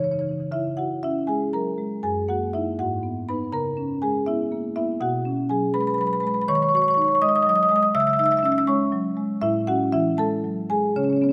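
A solo marimba played with medium mallets carries this reflective, flowing contemporary classical excerpt, its woody, full padauk tone close-miked and up front, set within a recital hall's reverb. Moving in a straight 6/8 at 80 BPM in C# dorian, it spans F#2 to E6 across a single section, wandering through chords such as C#madd9, F#13, Bsus2 and D#m7 before settling on Amaj7 near 9.4 seconds.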